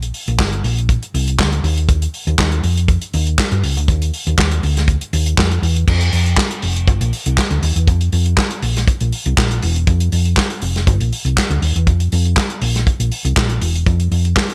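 A dry mix opens this short disco excerpt, glamorous and made for dancing at a straight 120 BPM in 4/4, tuned slightly below standard pitch. A hollow-body short-scale electric bass, played with the fingers, sits up front with a dark, round, amped tone, moving between E1 and G2 from the first second to about 14.3 s. The acoustic soul drum kit carries kick, snare, hi-hat, handclaps and crash cymbal, its sound tight yet roomy and a touch distant, with a medium-tuned snare, a tight kick, dark cymbals and a rolled-off top end, all wrapped in gated reverb. The groove moves from its opening section into a second part at 5.9 s, the drums running on until 14.5 s. It feels like a stretch lifted from a longer track, carried by bass and drums together.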